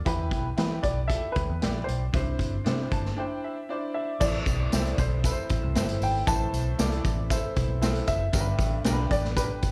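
Uptempo 1960s-style soul with a joyful, uplifting lift, heard as a live gig through a venue's PA with club reverb, opens on a gritty, saturated vintage drum kit with dark cymbals, a round, punchy foam-muted electric bass and a bright, woody, slightly detuned upright piano with slapback echo; a natural-toned baby grand piano carries the melody from 0.8 s, also with slapback echo; the upright piano adds a fill from 2.7 s that runs through a short break at 3.2 s; and at 4.2 s a jingly, close tambourine joins along with a very quiet, thick, overdriven tonewheel organ with key click and fast rotary speaker playing sustained chords.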